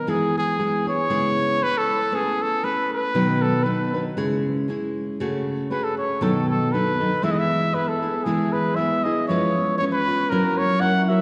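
A lightly swung 2/4 pulse at 118 BPM carries this festive, proud mariachi fragment in E major, where a classical-style solo trumpet sings the melody up front over full-bodied, fingerpicked nylon-string guitar, a thumb-plucked concert harp adds ringing arpeggios from 8.3 seconds, and a church-like hall reverb wraps the whole in a long, wet glow.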